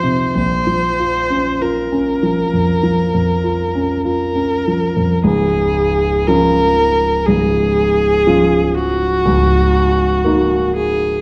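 Classical romantic chamber music for viola and grand piano unfolds here with a yearning, elegiac mood, its slow pulse moving freely in rubato. A single rich-toned viola carries the melody up front, its bowed line smooth and even with light vibrato. The concert grand accompanies close by with a warm tone, deep bass and short sustain, spanning a broad register beneath the viola. At 5.2 seconds the music turns from a minor harmony toward a brighter major one, and near 9.3 seconds a seventh chord over the same bass adds a touch of unresolved longing before this fragment of a longer work breaks off. A recital hall's wet reverb surrounds both players, giving the dark production a sense of space.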